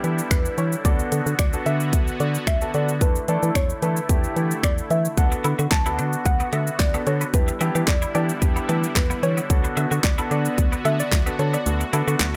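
This driving, bittersweet dance-pop excerpt opens at 111 BPM in a straight 4/4. A punchy, up-front pop drum kit with a fat snare drives it, with kick, hi-hat, shaker, handclaps and finger snaps. A dark, hollow, organ-like FM bass sits under it with a percussive, decaying attack and sidechain pumping. A soft, round pluck carries the melody with a gentle chorus and a filter sweep on its wave-folded tone. An intimate concert grand piano adds accompaniment with audible action noise and long sustain, while an evolving, detuned supersaw swell holds soft-edged chords, both breathing with the same sidechain pumping. At 5.3 seconds a bright, twangy twelve-string electric guitar enters with a clean, picked riff thickened by ensemble chorus. The harmony circles Em7, D6 and Asus4/E in a digital ambience, and the kick drops out at 11.7 seconds just before the cut.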